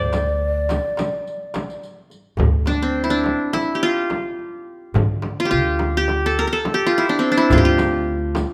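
Longing and soulful, this short cut from a longer Turkish makam ensemble piece moves in 9/8 at 212 BPM counted in eighths, set in D makam nihavent with the tuning pitched at A4 = 438 Hz. The plectrum-plucked qanun carries the melody up front, its triple strings giving a bright, edged ring, while a hollow, breathy ney sits close and present beside it, adding a tongued second line with vibrato that lasts only until 1.8 seconds. Beneath them, a woody pizzicato upright bass on steel strings anchors the low end. The percussion is layered: a crisp metal-shell darbuka played with hard hands sits in the background in a small-room sound, a deep, large frame drum struck with soft hands comes through compressed and saturated, and a vintage, band-limited riq adds jingles far back in the mix, dropping out after 2.2 seconds and returning at 7.5 seconds. A light reverb gives the ensemble a gentle sense of space.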